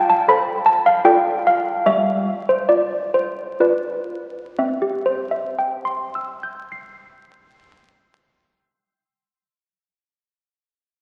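Malleted handbells play alone in this serene, festive classical tune in 3/4, cut from a longer piece, their damped, short, bell-like strokes sounding close, full and up front across a span from G3 to C7. The opening phrase moves through F, Dm/F and G7 while slowing down, then a second section settles on C at 4.6 seconds, and the bells carry on until 9.0 seconds. A long church reverb surrounds the playing, and the sound has the crackle of a very old 78 rpm record.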